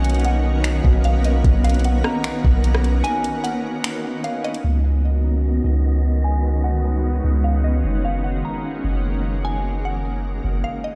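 A deep, mellow 808-style bass sits up front in this dreamy, blissful stretch of atmospheric cloud-rap in B major, moving at 150 BPM with a half-time feel beneath a shimmering, ethereal pad carrying Bmaj9, C#9sus4 and F#69 chords. A woody, round mallet-like synth pluck carries the melody with chorus and tape echo, while an airy, breathy wind-like noise texture hangs in the background and a soft electronic R&B kit of finger snaps, hi-hat, kick and rim click plays until 4.6 seconds. A filter sweep runs from there to the end, and the whole piece sounds as if played through a big sound system in a bare stone room, with a faint mains hum.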